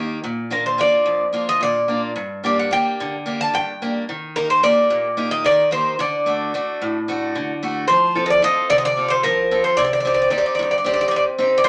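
This Greek folk excerpt from a bouzouki band carries a bittersweet, moody air, set in 7/8 metre with a straight feel that gradually speeds up from start to finish. A picked acoustic archtop guitar opens the passage at 0.0 seconds, its boxy, warm tone marked by audible finger squeak as it supplies the accompaniment from its low register upward. The Greek bouzouki enters at 0.5 seconds to carry the melody in a higher range, its picked double strings sounding warm and metallic, with some courses doubled at the octave. The bouzouki sits slightly ahead of the guitar in level, though both instruments sound close and up front, framed by a moderate studio reverb. The harmony moves through Bb, Gm, Eb and D before a new section at 7.9 seconds shifts to F and Cm.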